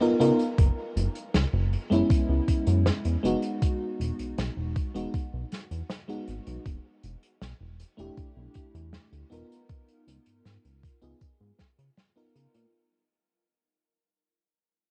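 At a relaxed 79 BPM in a straight 4/4, a thumpy, sampler-style electronic kick sits up front from 0.6 s, while a small-room unplugged kit of hi-hat and medium-tuned snare, played with bundle sticks and roughened by 12-bit grit, ticks beneath it. A lush FM electric piano layered with a soft pad carries the chords through C#13, F#7sus4, Emaj9 and G13/E, its dreamy, detuned tone shimmering with tremolo, subtle chorus and analog delay, as a glossy, chorused synth bass of pulse and sawtooth waves plucks and sustains from 0.2 s. Tuned slightly flat to A4 = 436 Hz, recorded to cassette tape and bathed in light reverb and studio ambience, this woozy, nostalgic vaporwave fragment fades out across its whole 12.7 seconds.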